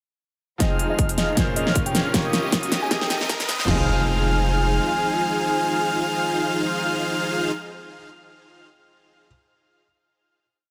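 A half-time groove at 156 BPM with a light 16th-note swing drives this emotional, lush future bass piece in F minor, as two big-room dance drum kits with a punchy kick, huge snare and crisp hats power a build and drum fill until 3.7 s, over a saturated sub bass and a dense, detuned supersaw riff carrying a filter sweep. A round, octave-layered synth lead plays a repeating riff melody while an airy, dreamy lead doubles the chords an octave higher, a brilliant grand piano sits in the background with spread chords, and a very quiet symphonic string section holds a smooth pad, with faint riser and impact effects marking the transition. Sidechain pumping runs through the synths and piano, digital delay trails the leads, supersaw and piano, a lush hall reverb surrounds the mix, and the piano is the last part to fade, ringing on after the final Fm7 chord until 9.3 s.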